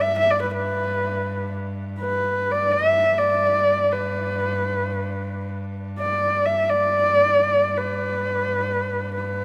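Bathed in a huge ambient reverb, this proud, vast 9.4-second fragment of Mongolian folk music in free time and a G gong mode sets a close, husky, woody horsehead fiddle up front, carrying the melody with vibrato and portamento between B4 and E5, over a quieter, earthy, biting cello holding a bowed G2 drone throughout.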